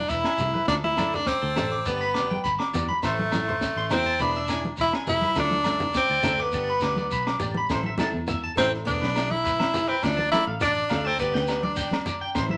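A wet studio reverb surrounds this short highlife guitar band excerpt, a bittersweet, mid-tempo groove at 103 BPM in A minor, with an edgy, forceful tenor saxophone up front carrying the melody in scooped, jazz-style phrases over a cycle of E, Dm, G and Am chords. A bright, twangy electric guitar at the edge of break-up picks arpeggios high above, while a picked steel-string acoustic guitar sits in the background and a round, foam-muted fingered bass anchors the low end. A compact cocktail kit with a punchy kick and high-tuned snare drives the pulse alongside ringing congas played with soft hands, grainy shekere and distant agogo bells, and a second section begins at 7.7 seconds.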